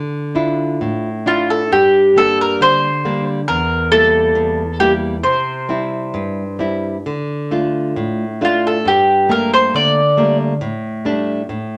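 An up-front, woody mandolin with picked double strings carries a passionate, longing melody from 1.3 seconds in this rubato fado-style ballad in D minor at 68 BPM, over a bright, small-sounding fingerpicked nylon-string guitar accompaniment that moves from Dmadd9 through Gm, Edim, C, Dm and Gmadd9 to a closing A7sus4, all set in a wet small-room reverb.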